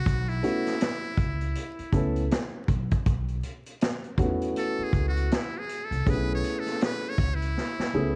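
A buzzy, metal-muted trumpet opens this mellow, nocturnal jazz-hop fragment alongside a woody pizzicato upright bass. The trumpet carries a solo melody with scooped notes and a thin, brilliant edge, close-miked and trailed by an analog delay. At 80 BPM with a swung sixteenth feel, a vintage drum kit arrives almost at once with a punchy kick, a medium-tuned snare and hi-hat, its top rolled off and roughened by 12-bit sampler grit. From 0.4 seconds a dark grand piano adds intimate, smooth accompaniment over a B9sus4 chord, its action noise audible up front. Light reverb and vinyl crackle give the production a dusky, warm finish, and a drum fill at 7.6 seconds closes this short cut from a longer piece.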